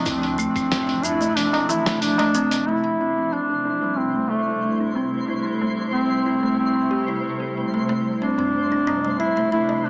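A straight 4/4 groove at 92 BPM sets this meditative, earthy organic downtempo piece in A minor, carried by a gritty, tape-warm sampler-style kit of claves, hi-hat, shaker and muffled snare with dub echo, while a thumpy electronic kick and deep sine sub bass sit in the background only at the very start, and a high-tuned, ringing tabla enters at 0.6 s and returns near the close. Up front, a mellow duduk with scooped notes sings the folk-style melody through tape echo over a blurred, evolving granular cloud pad that pumps on Dm7 and Am7 chords, and a woody, hollow kalimba plucks short arpeggios under a filter sweep from 2.7 s. A twinkling, sparkling granular shimmer joins at 3.1 s, and the echo-heavy mix has a plate-reverb sheen and a small-speaker character.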